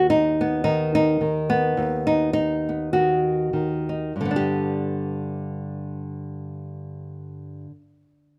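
Lightly swung eighths in 4/4 slow down over the first 4.2 seconds of this hopeful, gentle folk passage, cut from a longer piece, as a solo fingerpicked nylon-string guitar, dark and small in tone and placed up front in light reverb, moves from B/D# to G and plays on until 7.8 seconds.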